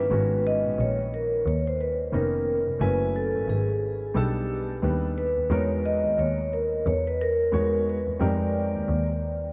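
Nocturnal and smoky, this hip hop fragment rolls with a swung 16th-note feel as a soft-mallet vibraphone carries the melody, its ringing, metallic tone shimmering with slow motor vibrato and trailing through analog delay. A bowed double bass sits up front with a rich, smooth sound and light vibrato, while a dark, vintage-toned grand piano adds mellow accompaniment through jazzy extended chords such as G#m11, B7alt and Emaj9#11. The whole dreamy mix is soaked in a vast cathedral reverb, giving this short cut from a longer piece a hazy, late-night glow.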